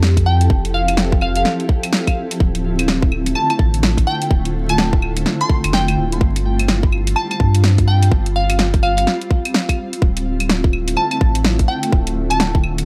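A dry, gritty recording with vinyl crackle frames this ghostly, nocturnal slice of future garage, cut from a longer piece, where a swung groove of claves, hi-hat and a cracking snare sits up front beside a tight electronic kick. A round, deep sub bass and a blurred, cloudy granular pad with its own reverb both pump with sidechain compression, moving from Fmaj9 to Dm9, G7sus4 and back to Dm9. High above them, a crystalline wavetable pluck with a filter sweep, chorus and tape echo sparkles from 0.3 seconds.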